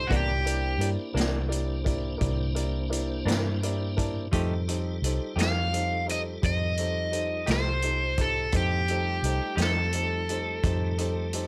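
A laid-back 12/8 slow blues at 57 BPM carries a soulful mood, with a bright, overdriven cranked stack guitar singing the melody over a woody upright piano that adds a fill at 3.3 seconds, a piping tonewheel organ through a slow rotary speaker, a dark, clean semi-hollow guitar with tremolo that drops out at 9.8 seconds, a round, foam-muted fingered bass, and a vintage drum kit of hi-hat, punchy kick and snare, all moving from C9 to F9 in light reverb in this short excerpt cut from a longer piece.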